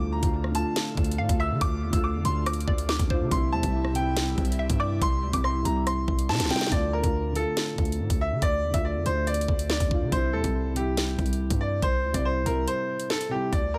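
Set in a digital ambience, this menacing, ominous drill track is cut from a longer piece and moves with a half-time feel. Up front, a brilliant, woody upright piano carries the melody high in its register, its long sustain trailed by tape echo, while a dark concert grand with deep bass, a boxy tone and audible action noise plays intimate accompaniment underneath. A soft, breathy pad with chorus and phaser holds sustained chords in the background until 6.7 s, and a hollow, bouncy square-wave pluck with chorus and tape echo adds a second line from 1.2 to 5.0 s. The electronic drill kit sits up front with a knocking kick, sharp snare, metallic hi-hats and rim clicks, beside a punchy, heavy 808-style bass with a fast attack and decaying tail. The harmony moves between D minor and C, a drum fill leads into the second half, and a brief break arrives near the close.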